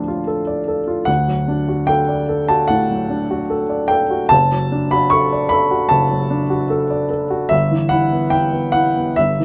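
This is a romantic classical character piece for solo piano, lyrical and intimate, at 74 BPM in 4/4 with a flexible rubato feel in D major. The upright piano carries the whole 9.4-second fragment alone, its woody, natural tone sitting up front, with the sound of its action audible beneath the notes. The playing spans a broad range, from F#1 in the bass to C#6 at the top. The harmony opens on a D minor colour that quickly turns to D major, moving to D over F# and then reaching E minor over G near 7.5 seconds. Close, detailed microphones and very little reverb keep the sound dry and personal, as if the listener were seated beside the instrument in this short cut from a longer piece.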